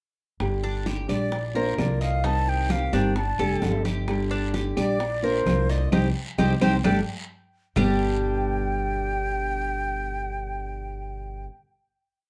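A straight four-beat Cuban son and guajira groove drives this short, danceable and sultry piece. Ringing congas with slaps and open strokes, round, low-tuned bongos in steady eighths with hand bell and a woody two-bar clave time line sit in the background, joined by a raspy guiro. Up front, a pizzicato upright bass on steel strings plays a tumbao that anticipates the chords, while a classical nylon-string guitar fingerpicks and strums with muted slaps. A Cuban tres weaves a picked, metallic guajeo on double strings, some octave-doubled, and from 1.1 seconds a breathy concert flute with soft attack and vibrato sings motif-based call phrases, touched by slapback echo and plate reverb. The montuno vamp leads into a band accent and a drum fill, after which the percussion stops at 7.9 seconds and the remaining players settle onto a final G chord from 7.8 seconds. The production is dark and warm, set in a small, moderately reverberant room.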